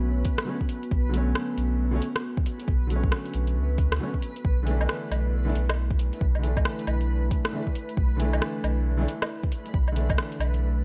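A swung 136 BPM future garage groove, with an up-front electronic kick and a deep house kit of metallic hi-hats, rim clicks and woodblock, drives this ghostly, melancholic excerpt, as a round sine sub bass and a soft, felt-muted upright piano trailing dub echo pump under sidechain beneath a dark, detuned, warbling pad with lo-fi 12-bit grit and chorus, while a bright, reversed granular texture swells faintly in the background over a Bm7 to Asus4/B change in light reverb.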